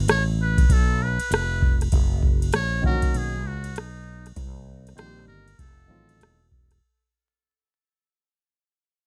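Jazz-hop at 98 BPM with a cool, mellow swing, where a booming, dry analog drum machine with deep kick and metallic hats sits up front beside a direct fretless electric bass, a buzzy, thin trumpet with metal mute carries a lightly vibratoed melody, and a dark grand piano with short sustain enters at 2.8 seconds over chords such as G9 and Cm7, all under vinyl crackle, little reverb and a fade-out, in this brief cut from a longer piece.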